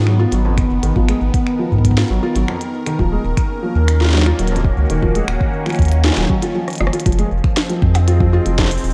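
Over a straight 4/4 pulse at 118 BPM, a glitchy electronic kit of finger snaps, clicky hats, percussion blips, rim clicks and a tiny snare ticks through studio reverb and digital delay, joined at 0.6 s by a deep electronic kick, with a drum fill at 6.7 s before the harmony moves to Fm7 at 7.1 s. This intricate, eerie IDM piece in F phrygian, cut from a longer track, rests on a round, up-front sine sub bass and a swirling, detuned sawtooth pad whose bright sustained chords are colored by phaser and chorus. A felt-muted upright piano weaves soft, intimate arpeggios through digital delay, its audible action noise adding to the dark production.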